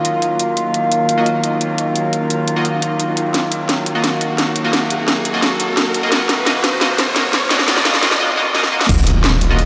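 A metallic, inharmonic drone opens this dark, tense stretch of technical drum and bass at 173 BPM in Eb minor, its eerie ring-modulated chords sitting up front with chorus, built-in reverb and sidechain pumping while a filter sweep moves across it through the build-up. The up-front drum and bass kit runs throughout with a cracking snare, crash cymbal and metallic hats, and drum fills push the tension toward the drop. From 1.2 seconds a nasal, band-passed chord stab with a filter pluck plays in the background, treated with chorus and analog delay, and from 2.2 seconds a riser climbs alongside it. At 8.9 seconds an impact hits as a snarling, overdriven saw bass growls on a low Eb, joined by a knocking electronic kick and a very quiet, gritty breakbeat kit with a high-tuned snare and rolled-off top. The whole mix is dreamy and soaked in a huge ambient reverb, cut from a longer piece just as the drop lands.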